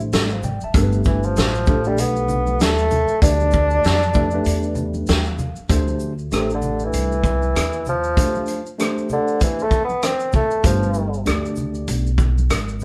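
Nocturnal and smoky, this short jazz-hop excerpt in D dorian swings at 97 BPM as a mellow bassoon with light vibrato carries the melody and takes a distant, roomy solo from 5.7 seconds, over a worn, slightly out-of-tune tine electric piano that adds a fill at 4.8 seconds, a woody pizzicato upright bass, a vintage drum kit with a fat snare and punchy kick, and bright congas and maracas in the background, all captured as a band playing live in one small room.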